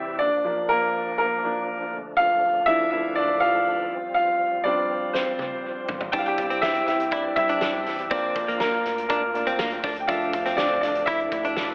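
Piano-driven pop in D minor at 121 BPM, this dramatic, bittersweet excerpt opens with a woody, up-front upright piano carrying the part over Bb, Dmadd9, Fsus2 and C, while a reedy tonewheel organ holds sustained chords in the background with chorus vibrato, key click and a fast rotary speaker. A roomy, distant drum kit with a fat snare and punchy kick arrives with a fill at 5.1 seconds, and at 6.1 seconds a clean, direct-recorded electric guitar riff with lush chorus and dub echo joins a deep, round analog bass tucked low in the mix. The whole track has a telephone-like, echo-heavy character under light reverb.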